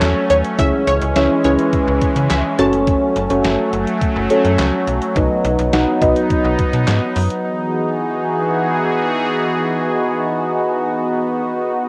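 A detuned 8-bit drum machine with thumpy kick, snare, hi-hat and handclaps sets a straight 105 BPM pulse for this nocturnal, driving synth-pop fragment, sounding from the start together with snappy, metallic slap-like FM bass up front, muted felt-like synth keys with chorus and a sweeping resonant pad, while a brief bright unison pluck through phaser and tape echo enters just after. The drums, bass and keys fall away by 7.4 seconds to leave the evolving sawtooth pad sustaining an Emaj7 chord until 11.9 seconds, all inside a wet spring reverb and a lo-fi home cassette sound.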